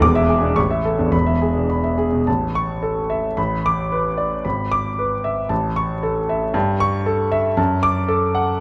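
Classical virtuoso piano study in A major, brilliant and heroic, moving at 103-117 BPM in 2/4 with a rubato feel, its solo concert grand heard up front and intimate with deep bass and audible action noise across a span from E1 to D6, set in a moderate recital hall reverb, in an 8.6-second fragment of a longer piece that shifts into a new section at 2.3 s.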